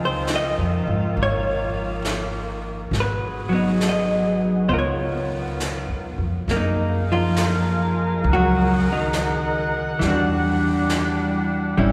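A dark, clean hollow-body electric guitar sits up front with a mellow, distant saxophone section holding soft, vibrato chords and a woody, thumpy pizzicato upright bass, joined at 0.3 s by a quiet, roomy brushed drum kit, in an intimate, romantic swung jazz ballad at 68 BPM in Db major, cut from a longer piece, that opens on Dbmaj9 and shifts to F#maj13 at 6.5 s, heard within a long church reverb.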